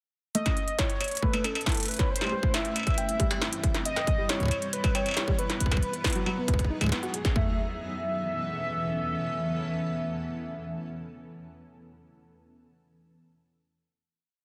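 A glitched, ever-changing industrial beat at 137 BPM in straight 4/4, with a distorted kick and toms and clanging snare, crisp hats and struck metal close up in a small room, drives this wistful, intricate IDM piece in A lydian, as a felt-muted upright piano's dark 9-step delayed arpeggio loop drifts against the bar, a cloudy, detuned granular pad holds evolving sustained chords from 1.2 s, and a velvety sawtooth lead with chorus, delay and vibrato sings arching motifs that carry on over the closing Aadd9 chord from 7.4 s once the drums and piano fall away, all in a dense, heavily limited mix with echo-chamber ambience.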